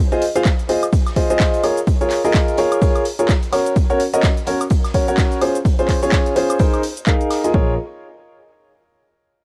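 Energetic and soulful, this piano house cut from a longer piece rides a swung sixteenth-note groove in four. A smooth, vintage grand piano sits up front playing a riff through Fm7, Bbm7, Gb, Dbmaj7 and Abadd9, pumping against the beat, softened by a low-pass filter and trailed by tape echo. An overdriven analog kick arrives at 0.5 seconds and hits hard up front, while an overdriven analog drum machine adds handclaps, hi-hat, shaker and woodblock. Deeper in the mix, an oversized low-tuned acoustic kit contributes a fat snare and pumping hi-hats in a bright stone room. At 7.5 seconds, as the chords return to Bbm7 for a new section, a growling, overdriven fingered electric bass briefly sounds a low Bb in the background. The whole piece carries a light reverb and the feel of a home cassette recording.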